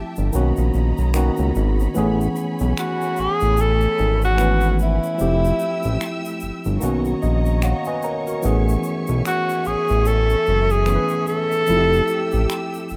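This is a smooth, sensual R&B and neo-soul fragment cut from a longer piece, built on a gently swung sixteenth-note feel and a drifting cycle of Bmaj9, Amaj9 and Fmaj9 chords. A fat, thick analog bass sits up front with a detuned, saturated sawtooth tone and fast attack, holding its notes under a worn, slightly out-of-tune tine electric piano that sounds lightly overdriven, as if heard through built-in speakers. A lush, bowed symphonic string section sustains soft, focused chords with vibrato in the background, while an acoustic egg shaker and finger snaps tick along from 0.2 seconds in a small-room setting. At 2.8 seconds a breathy tenor saxophone takes the solo melody up front, whispered and intimate, with scooped notes, a soft attack, vibrato and a smooth top in a pop style. The electric piano adds a fill from 6.8 seconds, and the whole thing carries light reverb and studio ambience in a rough, home-demo mix.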